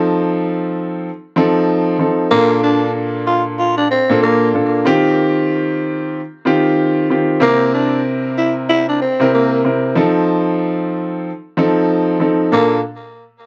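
In a moderate studio room, this soulful, confident hip hop cut at 94 BPM with a swung 16th feel in Bb major opens on a clear, deep-bassed concert grand piano comping over F7 before an up-front, breathy and growling tenor saxophone with raspy vibrato, scooped notes and a touch of delay enters at 2.3 seconds on Bbmaj7 to carry the jazz-style melody as the piano moves on through Eb69 and C7.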